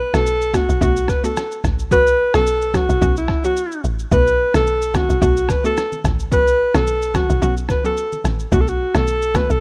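This smooth, sultry afrobeats groove moves at 109 BPM with a light sixteenth-note swing in B minor, cycling between Bm7 and F#sus4/B in a short section cut from a longer piece. A breathy, up-front alto saxophone carries the melody with vibrato and scooped notes, over a hollow, bouncy square-wave pluck treated with chorus and a woody, punchy log drum bass. A muffled, pitched-down sampler-style kit with a thumpy kick, rim click and shaker drives the beat, and very quiet, thin-skinned congas join at 4.1 seconds, all set in digital ambience with the feel of a rough home demo.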